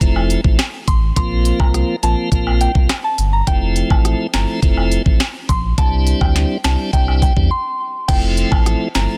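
Dancehall at 104 BPM in F major, sunny and summery, where an up-front electronic afro-pop kit with a knocking kick and sharp snare plays alongside a deep sine-and-triangle sub bass, a piping tonewheel organ with slow rotary speaker and sidechain pumping, background woodblock and cabasa, and a pure FM synth bell melody with chorus and delay entering at 0.9 s, all in a dense, heavily limited modern master with a brief break at 7.5 s in this cut from a longer piece.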